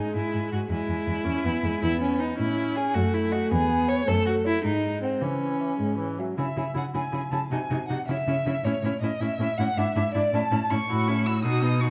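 In a straight 6/8 at 107 BPM, counted in dotted quarters, this quick classical-period movement for string quartet in C# minor moves with a spirited, cheerful lilt, in a fragment cut from a longer piece. A warm, distant first violin carries the melody with vibrato and expressive portamento, over a rich, smooth second violin line held up front. A dark, intimate viola supplies soft-attacked accompaniment with an airy bow, and a clear, focused cello anchors the bass, all four playing throughout while a recital hall reverb lends a dusky, enveloping sheen as the harmony passes from E through A and C#m toward a closing F#m7/A.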